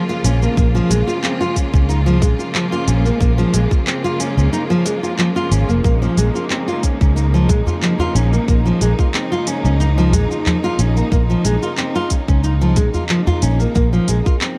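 A fingerpicked nylon-string guitar sits up front in this hypnotic, mystical slice of organic downtempo, its full-bodied arpeggios carrying fresh-string brightness, audible finger squeak and a trail of digital delay. Beneath it, a round, amped fretless electric bass holds the low end with a dark, forward presence and sidechain pumping, joined by a tight electronic kick that arrives at 0.6 seconds. Smooth hi-hats, cabasa and handclaps from a produced electronic kit add a gently swung sixteenth-note feel. A distant, lush symphonic string section bows sustained chords with focused vibrato, breathing with the same sidechain pumping as the bass, all resting on a single Bbm7 harmony. From 7.7 to 13.4 seconds, a deep, close and dry udu joins the groove. Light reverb and a dark, warm production give this fragment of a longer piece an enveloping, dusky glow.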